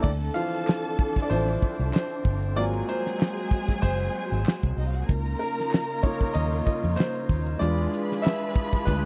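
A dry, close 1970s-style soul excerpt at 95 BPM with a lightly swung sixteenth feel opens on a clear, intimate baby grand piano taking the lead over a damped drum kit with a fat snare and dark cymbals, a round, foam-muted electric bass, a focused symphonic string line with vibrato, and veiled, con sordino studio strings holding distant sustained chords, while a hollow group handclap enters at 0.7 seconds as the harmony moves from Dm7 through Ab13 and Db69 to E7b9.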